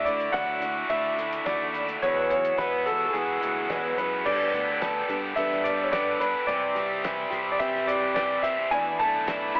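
Folk rock with a heartland rock lean, this hopeful, jangly passage moves at 108 BPM in a straight 4/4, cut from a longer piece and heard through a narrow telephone-like filter inside a moderate echo chamber. A bright concert grand piano carries the melody up front, its brilliant tone and deep bass trailed by an analog delay. Beneath it, a boxy old ladder-braced acoustic guitar picks the accompaniment while a biting, double-tracked overdriven guitar plays a riff close to the listener. A reedy accordion holds sustained chords in the background with a slow beating shimmer, and a fingered electric bass sits low and direct. A cloth-damped, thuddy drum kit enters at 0.1 seconds with a fat snare, tight kick, dark cymbals and a rolled-off top, as the harmony moves from Dadd9 and Eadd9 into a second section at 4.3 seconds through Gadd9 and C before landing on E7sus4.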